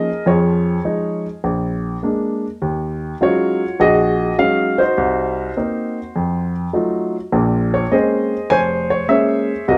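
A swung 4/4 lilt carries this brief, moody solo jazz passage, cut from a longer piece, with a cool air. A single upright piano sits up front with a woody, intimate tone, its action noise audible, moving through rich minor-leaning harmonies that settle on a Bbm9 at 7.3 seconds. Moderate room reverb gives the sense of a live performance in a studio.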